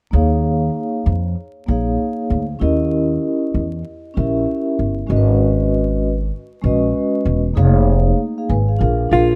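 Mellow, soft-mallet vibraphone with a slow motor vibrato and a woody, thumpy pizzicato upright bass open this smoky, cool jazz-hop fragment at 97 BPM with a swung sixteenth-note feel, moving through Ebsus2, Eb7b9, Abm7 and Db13/F to Bb7 in a small room with light reverb, vinyl crackle and a rough home-demo mix, until a clean, dark hollow-body electric guitar arrives up front on a single picked melody note at 9.1 seconds.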